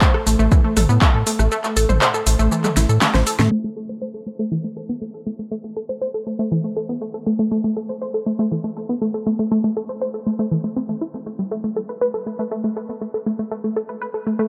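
Melodic techno, dark and dramatic, built on a lush, detuned unison pluck playing bright arpeggios throughout, pumping with sidechain and trailing dub echo. A punchy, overdriven electronic kick drives only the opening until 1.1 s, while a round sine-and-sawtooth analog bass sits deep beneath until 3.5 s, also pumping; the layered deep house kit, with fat snare, metallic hats, handclaps, rim click, shaker and toms, stays up front with overdrive and filtered percussion, adding a fill just before that point. From there a filter sweep carries the rest of the excerpt, all under light reverb and a low-pass filter.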